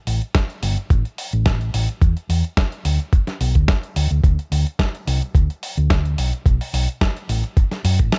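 Gritty, tape-warm sampler-style kick and a dark, round bass sit up front in a digital ambience on this short nu-disco excerpt, moving at 108 BPM in 4/4 with a light swing on the 16ths and a sensual, cosmic mood. A hollow-body short-scale electric bass, fingered and amped, holds the low end between G1 and F#2, while a compressed, thumpy electronic kick enters at 0.3 seconds. Alongside it, a dusty soul drum kit supplies hi-hat and a medium-tuned snare, sitting lower in the mix beneath the bass and kick.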